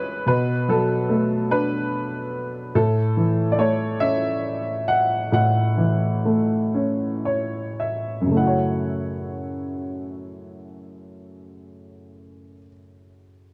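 Reflective, melancholic folk in a straight 6/8, carried by a lone woody, boxy, slightly detuned upright piano that sits up front playing the melody over Bm7 and F#m7/A, slowing from 2.7 seconds, adding a fill at 6.8 seconds and settling on F#m7 at 8.4 seconds, all within a dark production and a light reverb.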